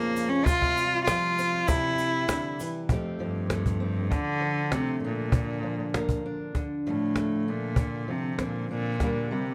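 A straight 4/4 pulse at 98 BPM from a snappy, up-front cajon played with soft hands carries this pastoral acoustic folk fragment in F major, where a clear, earthy cello with light vibrato and an airy bow sings the melody over fingerpicked steel-string guitar, while a reedy, breathing pedal harmonium holds chords in the background until 2.9 s and a grainy, distant tube shaker stops at 2.7 s, all in a close, detailed recording with light reverb.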